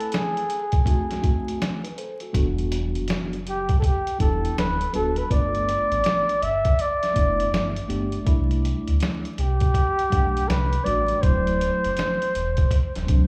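A short break opens this relaxed jazz-hop excerpt, with a breathy flugelhorn, a mellow tine electric piano and a lo-fi sampler-style drum kit sounding from the start at 81 BPM in G major, tuned slightly flat to A4 = 436 Hz. The flugelhorn carries the solo melody up front in a jazz style, with light vibrato, scooped notes and a slapback echo and analog delay trailing its phrases. The electric piano comps underneath with a clean, mellow, warm tone heard through its built-in speakers and touched by slapback echo, moving through chords such as Em9, G7, C6 and D9 before a brief fill at 13.1 seconds. The drums sit up front with a compressed, muffled, tape-warm character, a thumpy kick, a medium-tuned snare and hi-hat, all swung on the sixteenths and re-recorded in a large room. At 2.3 seconds a deep, full sine sub bass with an added octave enters, its notes striking quickly and sustaining. The whole excerpt has the feel of a live gig heard through a venue's PA, with club reverb and vinyl crackle lending a warm, relaxed atmosphere.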